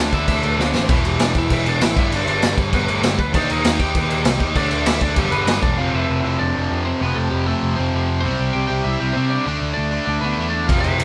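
A raw garage drum kit sits up front in this rowdy, upbeat punk rock excerpt, its punchy kick, medium-tuned snare and crash cymbal sounding gritty and saturated with a rolled-off top in a small, pumping room. A twangy, slightly broken-up lead guitar carries the melody, compressed and bright, while a growly, amped electric bass drives underneath with a punchy bite. Two overdriven rhythm guitars churn out picked riffs further back in the mix, giving the band a thick, live-in-one-room feel with light reverb. A quick drum fill arrives at 0.6 seconds, and the drums drop out at 5.7 seconds as the music shifts into a half-time passage over chords moving from F to C. The kit comes back in at 10.7 seconds just before the clip cuts off.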